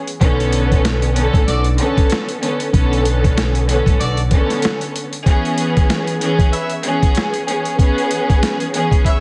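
Heavily compressed and radio-like in a small room, this dark, moody boom-bap hip-hop fragment at 95 BPM in B dorian swings on a gritty, pitched-down sampler drum kit with a thumpy kick, high-tuned snare and hi-hat, overdriven and sitting up front, beneath an intimate bowed string section with vibrato and a smooth, sul tasto top, cassette-tinted and filtered, while a woody pizzicato upright bass on gut strings plays until 4.3 seconds, a distant, roomy trumpet section enters at 1.5 seconds with clear, classical-style stabs carrying slapback echo, and the harmony moves from Bm9 to C#m7 at 5.3 seconds.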